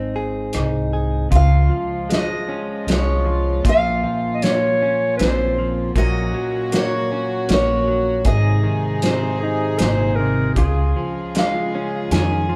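Acoustic folk-pop ballad in Db major at 78 BPM in 3/4, heartfelt and tender, cut from a longer piece, with a picked steel-string acoustic guitar carrying the melody up front, finger squeaks audible, over a clean, compressed direct-recorded electric guitar accompaniment, a woody pizzicato upright bass and a cloth-damped, thuddy drum kit with a tight kick and rolled-off top. A distant, floating chamber string section enters at 1.3 s with soft-attack sustained chords, and a bright, classical-style clarinet adds a second line from 4.3 s to 11.1 s. The band plays live together in one large studio with moderate reverb, moving through Db, Bbmadd9 and Gb/Bb before returning to Ab and Db.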